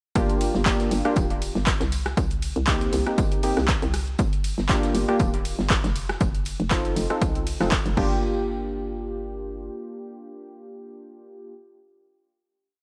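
Up-front, round sawtooth keys with a detuned chorus, tape echo and sidechain pumping play syncopated, close-voiced chord stabs through a warm, deep house piece in G minor at 119 BPM, with a 16th-note swing and a Gm7, Cm7, Gm7, F7 progression. Beneath them, a hollow, bouncy FM bass with tube saturation knocks out a dotted rhythm, while a gritty, overdriven four-on-the-floor kick and a punchy analog drum machine supply hats, ride, rim clicks, handclaps and crash in a large-room sound, alongside a very quiet, tight-booth cocktail kit looping an edited breakbeat of hi-hat, high-tuned snare and tambourine. The drums stop around 8 seconds, the bass at 9.7 seconds, and the keys ring on alone until 11.5 seconds as the final hit.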